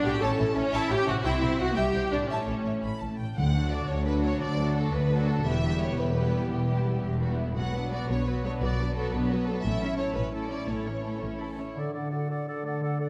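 This cinematic excerpt opens with a full string body in 6/8. Violins carry a lush, expressive melody over a second, more distant violin line, with violas filling the middle and a cello section sitting in the background. Double basses anchor the bottom with soft-attack bowing, while a concert harp rings out fingerpicked arpeggios behind the orchestra. Very quiet timpani on calf heads sound at 3.4 seconds, and the music takes on a heroic, adventurous sweep. As the low strings finish at 11.7 seconds, a mellow French horn section holds a sustained note, and close-miked oboe and clarinet, both clear, join a pure, bright flute group on a short second line, all set in a wet scoring-stage reverb.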